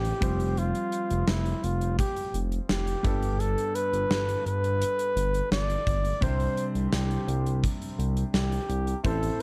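Romantic and glossy, this short cut from a longer 1980s-style pop piece moves at 85 BPM in a straight 4/4, with a warm, up-front flugelhorn singing the melody with light vibrato, scooped notes and slapback echo over a clear, open concert grand piano, a smooth, nasal detuned synth bass and a polished, airy gated drum kit of tight kick, medium-tuned snare and hi-hat, all under light reverb as the chords pass from Fsus2 to Gadd9 to Csus2.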